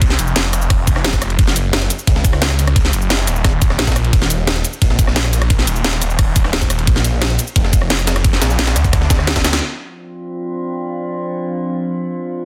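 At 175 BPM in a straight 4/4, a knocking electronic kick and a layered drum and bass kit with a cracking snare, low-passed hats and a small room drive this dark, aggressive technical drum and bass cut. A very quiet, gritty breakbeat sampler kit with a high-tuned snare adds ride and snare underneath, while a snarling, detuned sawtooth bass, distorted, bright and pumping with the sidechain, growls up front through the drop to 9.6 seconds. After a drum fill and band accent, the low end gives way at 9.6 seconds, and at 10.0 seconds an eerie, wave-folded metallic drone with chorus, phaser and reverb enters, swept by a filter until 12.4 seconds, all in a dense, heavily limited master.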